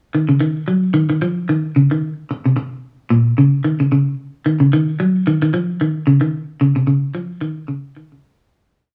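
A moderate studio reverb gives this short afrobeat piece a live-in-one-room sound, with a single clean electric guitar placed up front. The guitar plays alone from 0.1 s, repeating a picked ostinato in its low register between Bb2 and Gb3. Its tone is warm and clean, and the 16th notes carry a light swing over a steady 4/4 groove. The mood is driving and hypnotic, built entirely on that one repeating figure. A fade-out begins at 6.3 s, and the guitar stops at 8.2 s.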